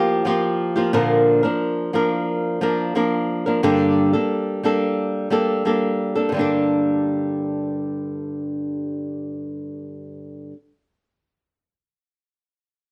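Pop in G minor at 89 BPM, this short excerpt cut from a longer piece has a tender, wistful mood carried by a single fingerpicked flamenco guitar, acoustic and up front, with finger squeaks audible across its G2 to Bb4 range. The guitar accompanies through a rootless Ebadd9, Bb and Gmadd9, moving into a second section at 6.3 seconds before the recording ends at 10.6 seconds. Light reverb sits on an outdoor recording that carries none of a room's sound.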